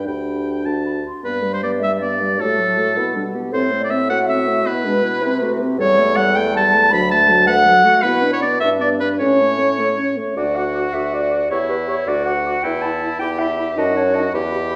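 The recording sits in a reverberant recital hall that adds a lingering, wet sheen around a small-room closeness, and the passage is cut from a longer piece. It is a lively, cheerful classical-period movement for wind quintet in 6/8. The bright oboe is placed up front with a light vibrato, carrying the second line clearly. The flute's airy, metallic melody, with its soft attack and expressive vibrato, sits further back in the mix. Beneath them, the smooth-topped clarinet and the mellow French horn fill in the accompaniment, while the warm bassoon anchors the bass; the clarinet drops out at 14.3 s, shortly before the others finish at 14.8 s.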